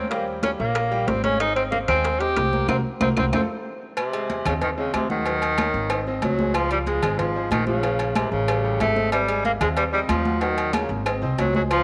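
Danceable and passionate, this salsa excerpt puts a breathy, whispered tenor saxophone up front with a soft attack and light vibrato over a clear grand piano in the background, a thumpy gut-string upright bass, ringing congas, tight high-tuned bongos and cowbell, metal-shell timbales with agogo bells, and very quiet claves, all bathed in moderate plate reverb, with a band accent from 2.7 seconds and a drum fill from 3.3 seconds leading into the second section at 4.0 seconds.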